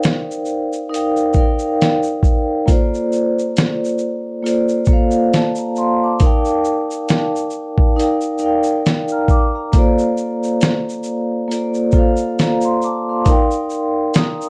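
A dark, warm production with a moderate studio reverb gives this short cut from a longer lo-fi hip hop piece a cosy, mellow atmosphere. A dusty, sampler-style soul drum kit sits up front, its compressed, gritty sound built on a thumpy kick, a fat snare, hi-hat and shaker, all played with a lightly swung sixteenth-note feel. Alongside it, a vibraphone played with soft mallets carries the accompaniment, its metallic, ringing tone softened by a slow motor vibrato and a cassette-tape colour. The vibraphone sits mid-forward, spanning a range from Bb3 up to F6 as it voices lush chords alternating between Ebmaj9 and Bbmaj9. Both parts play throughout the 14.5 seconds, keeping the mood relaxed and hazy from start to finish.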